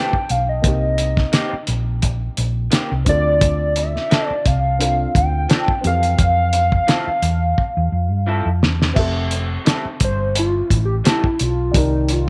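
A hollow, woody square-wave lead carries the melody from the first moment, with chorus and slapback echo, while a dark, boxy baby grand piano and a slightly broken-up electric guitar riff through a small old amp with analog chorus sit beneath it. This lush, romantic 1970s-style soul piece, cut from a longer work, moves at an unhurried pace with a gentle swing on the sixteenths, over chords that drift through Fmaj9, Cm7, Dm7 and Fmaj7. A cloth-damped acoustic kit enters almost at once, gritty and muffled with a fat snare, tight kick, hi-hat and dark crash, and a round, hollow-body fingered electric bass joins up front. The drums play a fill from 7.6 seconds, and at 9.0 seconds the detuned synth lead steps out into a solo with vibrato. The guitar stops at 11.3 seconds, shortly before the piece returns to Cm7 at 11.7 seconds, all set in a light studio reverb.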